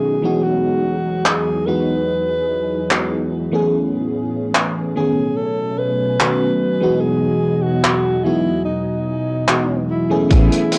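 A hazy home cassette recording in a modest studio room carries this woozy, faded vaporwave fragment at 73 BPM in E major, drifting from Emaj9 through Amaj9 and B13 and back. A breathy, whispered alto saxophone with subtone and vibrato sings the close-miked lead through tape echo and plate reverb, over a lush, chorused FM electric piano with a soft pad layer and a silky string machine holding long, slow-attack chords, while a vintage drum kit with a rolled-off top, handclaps and hi-hat enters at 1.3 seconds. At 10.3 seconds a twangy, slightly broken-up electric guitar riff, a bright fingered electric bass and a thumpy sampler-style kick drum appear briefly as the fragment cuts off.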